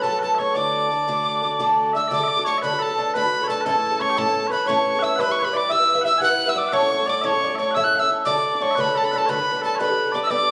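A slip jig in 9/8 at 117 BPM, counted in dotted quarters with a straight feel, this cheerful, bright Celtic folk excerpt sits in D major and is cut from a longer piece. A breathy metal tin whistle carries the melody up front and close, its tongued notes marked by chiff and touched with vibrato. Beneath it, a ringing, fingerpicked concert harp and mellow, sweet small bagpipes with a continuous, vibrato-tinged tone each trace a second line. A picked twelve-string acoustic guitar, boxy and parlour-sized, provides a shimmering, octave-doubled accompaniment with audible finger squeak. The band plays live in one room, wrapped in a wet, large studio reverb, and the harmony moves from F#m to D, then through A, Em/G and A back to D before closing on Gadd9 at 9.8 seconds.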